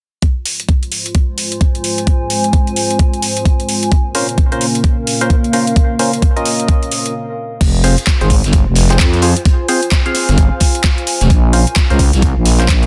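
A bouncy, gritty bass house cut opens with an overdriven, knocking kick up front and a garage kit of crash, handclaps and metallic hi-hats beneath a deep, moody analog pad whose filter sweeps through the opening section, soon joined by a warbling, lo-fi tape-like pad with built-in reverb; hollow, organ-like stabs with phaser, delay and 12-bit sampler grit arrive at 4.1 seconds, and at 7.6 seconds a thick, growling FM bass takes the front alongside a rolled-off vintage kit of snare and hi-hat in the background, all set in a dense, heavily limited, dry mix with sidechain pumping on the pads, stabs and bass.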